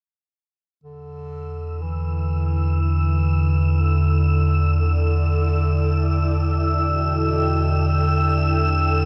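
Dark ambient drone in E minor at 60 BPM, desolate and ominous, cut from a longer piece and resting on a single Em7 chord. An up-front analog drone built from sawtooth and pulse waves, touched with subtle chorus and a filter sweep, sounds from 1.3 seconds, while a solo bass clarinet in a classical style fades in at 0.8 seconds with a low, warm line soaked in tape echo. From 1.7 seconds a breathy, wind-like tuned noise texture drifts in, and at 2.1 seconds a blurred, detuned granular cloud pad fades in with mellow sustained chords under shimmer reverb, all set in a huge ambient reverb.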